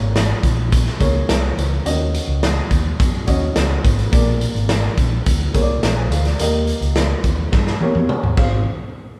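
Uptempo 1960s-style soul at 106 BPM in a straight 4/4, warm and uplifting, this short cut from a longer piece has a band playing live in one room with light reverb, moving from Bbm7 through Ebm7, Bb7 and Eb before landing on Ab6. A dark, woody upright piano with audible action noise and a slightly detuned, worn character spans a broad range in accompaniment, while a growly, amped fingered electric bass holds down the low end. Up front, a gritty, saturated garage drum kit with a punchy kick, medium-tuned snare, hi-hat, crash and toms captured in a bright stone room closes with a drum fill from 7.5 seconds.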